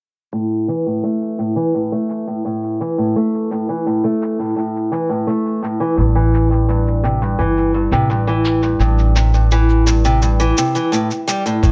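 Folktronica with a wistful, autumnal mood, cut from a longer piece, built on an up-front, boxy old ladder-braced acoustic guitar picking arpeggios with audible finger squeak, shaded by a filter sweep, delay and plate reverb, over a muffled, pitched-down, sampler-style shaker. At 6.0 s a woody, dark upright bass on gut strings enters with pizzicato notes as the harmony moves from Esus4/A to Am7. A compressed, tape-toned electronic kick lands with a thumpy hit at 11.6 s, all within a moderate studio reverb.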